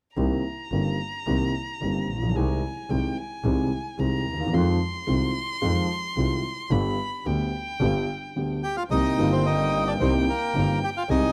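A rubato tango in four, melancholic and tense, rests on a boxy grand piano with deep bass placed up front and an earthy, airy bowed double bass, while a solo violin carries a high second line with expressive vibrato and portamento. After a brief break at 8.4 seconds, a reedy, dark bandoneon takes the melody at 8.6 seconds, and a very quiet, lush string section adds smooth stabs from 8.9 seconds. The sound is dry and close, like a 1970s studio recording, and the passage is cut from a longer piece.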